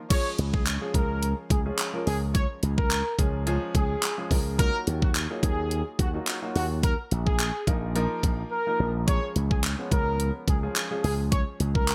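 A layered, overdriven pop drum kit leads this bright 1980s-style dance-pop excerpt at 107 BPM, its knocking kick, handclaps, hi-hat and crash cymbal sitting up front with gated reverb and a small-room character. A horn section carries the melody between Gb4 and Db5, tight and smooth on top with light vibrato, given delay and sidechain pumping. Beneath it, a growly slap bass with an envelope filter enters at 0.4 seconds, bright and direct, pumping in the low register from Bb1 to Eb2. A polished grand piano with short sustain and subtle chorus fills in the accompaniment, moving through Db, Ebmadd9 and Bbsus4 before returning to Db. The whole passage plays as a confident yet bittersweet drop, broken only by a brief silent gap from 8.5 to 9.1 seconds, all within light reverb.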